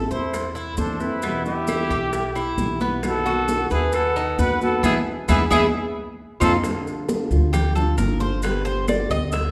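A wet recital-hall reverb surrounds this sultry Cuban son and guajira passage, cut from a longer piece and moving at 133 BPM in a straight 4/4. An up-front, thumpy pizzicato upright bass and a fingerpicked nylon-string guitar with a deep classical tone anchor the harmony, while a bright, metallic Cuban tres picks arpeggios on its doubled strings. A breathy trumpet with soft attack, vibrato and an intimate, whispered vintage quality carries the melody until about 6.5 seconds, shadowed in the background by a crisp, reedy jazz flute with audible chiff on a second line. Most of the percussion sits back in the mix: ringing, high-tuned congas played with soft hands, tight, distant bongos and woody claves, while grainy, mellow maracas sound close. After a band accent from 4.8 seconds, the tres takes a solo at 6.6 seconds as the chords shift from F7 to Gm11 and settle on G.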